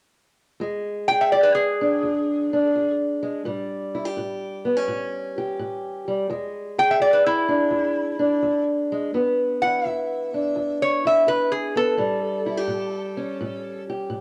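Acoustic country blues with a rollicking, gritty swing, heard in a short cut from a longer piece that moves between E7 and A7. A fingerpicked steel-string parlour guitar, dark and boxy, lays down the accompaniment from 0.6 seconds, while a lap resonator guitar enters at 1.1 seconds to carry the melody with a bright, metallic, nasal slide tone played with fingerpicks. Both guitars sit up front with the character of a cassette home recording, bathed in moderate spring reverb and studio ambience.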